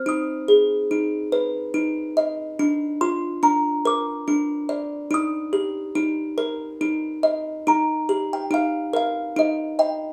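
A lone music box opens this short excerpt of gentle, innocent children's music, its delicate, tinkling plucked tones sounding up front from the very start. The little instrument has the bright voice of a small box and sounds slightly out of tune, which adds to its childlike charm as it ranges from D4 up to Eb6. The piece sits in Eb major and moves in a slow 6/8 at 47 beats per minute, counted in dotted quarters, with a straight feel. The harmony passes from Ab minor to Bb and settles on Eb at 5.1 seconds, and a new section begins at 7.7 seconds before the excerpt is cut off at 10.1 seconds. A moderate studio reverb and a faint sense of room around the music box give the recording a soft, intimate space.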